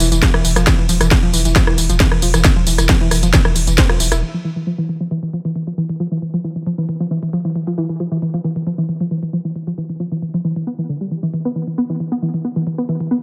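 Relentless and driving, this peak-time techno cut at 135 BPM opens on a drop where a punchy, tape-warm electronic kick, an up-front drum kit of cracking snare, smooth hi-hats, ride cymbal, rim click and tambourine pumping under sidechain, and a thick, overdriven sine sub bass on E1 all churn beneath a warbling, dusty, nasal pluck riff with chorus and tape echo, until by 4.2 s the rhythm section has dropped out and the dark, lo-fi pluck carries on alone under a filter sweep through 13.1 s in a dry, close sound.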